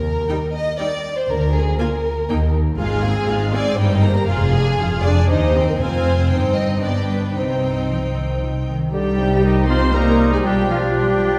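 Softly attacked sul tasto violins open this restless, stormy classical-period movement in triple time over expressive cellos with portamento and lush double basses, while a second violin section carrying the melody and rich, even violas join almost at once; at 8.9 seconds an airy flute, a very quiet clarinet, a mellow bassoon and dark background horn chords enter, followed by a clear oboe at 9.4 seconds, the orchestra heard from further back in a reverberant concert hall.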